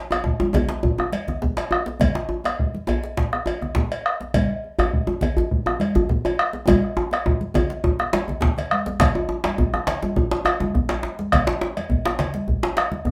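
Set in a moderate studio reverb, this powerful, earthy West African drum ensemble excerpt at 103 BPM in a straight 4/4 features a round, vintage-toned bombo up front, bright thin-skinned congas played with soft hands, a metallic cowbell, a deep djembe struck with hard hands, and a second, medium-tuned djembe heard up front in a live room, with a drum fill from 6.7 to 9.0 seconds leading into a new section.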